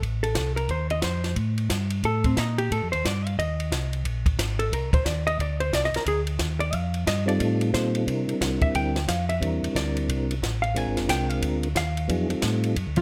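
A dark, clean hollow-body jazz guitar solos over a greasy, bluesy soul jazz organ trio groove at 179 BPM, with a round tonewheel organ on bass through slow rotary speaker, a dry cocktail kit with a punchy kick and high-tuned snare, and a flute-like percussive second organ entering on melody at 7.3 seconds over F9, Bb9 and C9 chords in light reverb.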